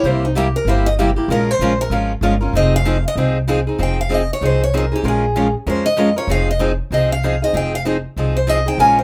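Swung eighths drive this fiery, virtuosic 192 BPM acoustic string swing in F minor, where a fresh-stringed, up-front archtop guitar carries the melody, a concert steel-string guitar with audible finger squeak takes a solo across the whole passage, a softer boxy parlour steel-string guitar fills in accompaniment, and a woody, thumpy gut-string upright bass anchors changes moving from C7 through Bbm9 to Fm7, all in light reverb over a faint mains hum in this cut from a longer piece.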